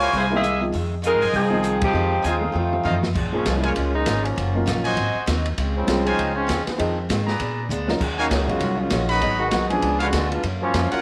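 Swinging and brassy, this brief big band swing passage is cut from a longer piece and moves at a brisk 198 BPM in 4/4 with a 60% swing on the eighths, starting in F minor and shifting to Bb minor at 3.2 seconds. A mellow saxophone section carries the opening melody with light vibrato and a tight, roomy blend, while a bright trumpet section punches out stabs and the whole band hits an accent at 1.8 seconds. From 3.3 seconds a clear trombone section takes over the lead with its own vibrato, playing a solo through the rest of the passage over chords that move through Bbm7, Ebm9, Ab7 and Dbmaj7 before settling on Gbmaj7. Underneath, a woody, growly pizzicato upright bass sits up front, and an open jazz drum kit with dark cymbals and a boomy kick adds fills around 2.6 and 7.7 seconds. An upright piano with long sustain and a boxy, picked archtop guitar, complete with finger squeak, stay in the background. 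Light reverb and studio ambience round out the recording.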